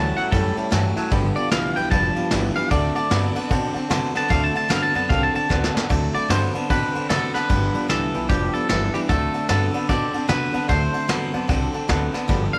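A clean, twangy electric guitar solo opens this retro, rowdy rockabilly passage, cut from a longer piece, swinging at 150 BPM in 4/4 in D mixolydian over A7, G7 and D7 chords. A second bright, compressed electric guitar plays a low riff underneath, while a woody, thumpy pizzicato upright bass on gut strings carries the bass line. A soft brush drum kit joins at 0.2 seconds, sitting up front yet roomy, with a tight kick, a medium-tuned snare and ride cymbal. Further back, a full-bodied jumbo steel-string acoustic guitar and a short-sustained upright piano high in its range fill out the accompaniment. A drum fill at 5.5 seconds leads into a new section at 5.9 seconds, where the lead guitar, touched with subtle chorus and tape echo, carries the melody on through studio reverb.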